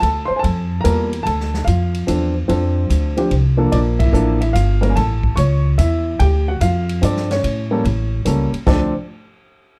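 An intimate baby grand piano, up front with audible action noise and short sustain, carries the melody in this smoky, moody jazz piano trio fragment in D minor, swinging at 146 BPM in 3/4 over a woody, dark pizzicato upright bass and a natural acoustic drum kit with punchy kick, medium-tuned snare, hi-hat, ride and crash, moving from a rootless Gm9 through Dm7 and Bbmaj7 to A7b9 with a band accent at 3.9 seconds, all in a lightly reverberant, warm production.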